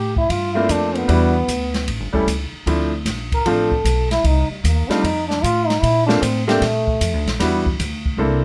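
A breathy trombone with light vibrato carries a playful, relaxed solo in this short small-group swing and bop excerpt at 152 BPM, sounding slightly distant and roomy until it stops at 7.4 seconds. A clear upright piano sits up front with the accompanying chords, while a woody pizzicato upright bass on steel strings anchors the low end. An airy acoustic drum kit with a small-room sound, dark cymbals, a medium-tuned snare and a boomy kick swings underneath and adds a fill at 8.2 seconds, all captured with light reverb and close, detailed microphones.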